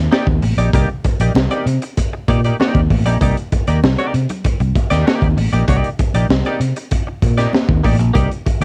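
A fingered electric bass opens this short funk cut at 0.0 seconds, amped and up front, settling on a Cm9 chord in C dorian at 97 BPM in a straight 4/4. From 0.1 seconds a crunchy breakbeat kit joins with a tight kick, a high-tuned snare and hi-hat, its sound saturated and gritty with a rolled-off top and a cassette-tape colour. A clean electric guitar, recorded direct, adds bright, twangy, compressed accompaniment with a scooped tone, coloured by analog chorus and tape. Congas sit very low in the mix, close and dry, with thin high-tuned skins struck by hard hands. The whole home-made cassette recording sounds dry and intimate, giving the groove a cool, funky mood.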